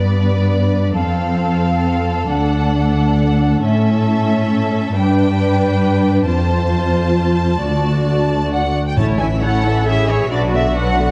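The cello section stands out most, sitting close and up front with a soft attack and expressive vibrato as it carries the bass beneath a heroic, triumphant cinematic adventure score at 135 BPM in 3/4. Above it, two violin sections share the melody and a second line while the viola section fills in the accompaniment, all bowed with a lush, smooth, even ensemble sound. The first 9.0 seconds form a build-up over a cycle of G, F, D and A chords. At 9.0 seconds a dark, bowed double bass section arrives up front with its own vibrato, and the timpani sounds briefly on medium mallets, close and dry in the background, as the harmony moves from A to Bm. The strings are tuned to A4 = 437 Hz and set in a moderate scoring-stage reverb with a 1.7-second decay, giving the dark, warm production a spacious bloom. The excerpt is cut from a longer piece and ends at 11.1 seconds.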